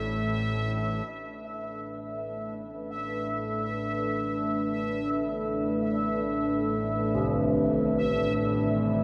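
Drenched in a wet spring reverb, this desolate, ominous dark ambient drone sets a deep, moody sawtooth pad with a sub octave and chorus up front beside a bubbling, resonant filter-stepped texture, while a tense, string-like bowed drone with vibrato fades in from 1.1 s and bronze carillon bells ring out bright, airy arpeggios through dub echo from 7.1 s in this fragment of a longer piece.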